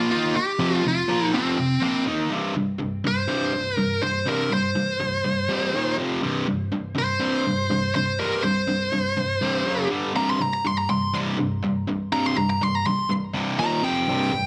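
A straight, driving 4/4 pulse carries this heavy rock fragment, cut from a longer piece. An overdriven electric guitar plays the riff throughout, picked and double-tracked, its bright, low tone sitting up front as it moves through power chords built on F5, C5, Eb5 and briefly F#5 and G5 before returning through C5 and Eb5 to close on F5. A high-gain lead guitar, dark and distorted, also sits up front across the whole fragment, carrying the melody in a higher register. At 2.3 seconds it launches into a solo that runs to the end at 14.5 seconds. A moderate studio reverb gives the parts some room, and the dense, heavily limited modern master keeps the sound loud and compact.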